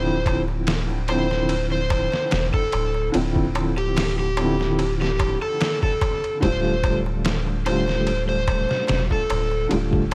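A gritty, pitched-down sampler drum kit with a thumpy kick, medium-tuned snare, hi-hat and ride sets a lightly swung 73 BPM groove from 0.3 seconds, while a clay darbuka, struck with hard hands, plays along in the background of this melancholic, brooding trip hop fragment in D minor. A round, mellow sub bass with tube saturation sits up front beneath a soft, felt-muted upright piano that carries tremolo, tape echo and a filter sweep across the whole passage. An overdriven electric slide guitar sings the melody up front through dub echo, and the harmony moves from Dm9 to F69/D at 6.4 seconds, in a dry, grainy hardware sound with digital ambience.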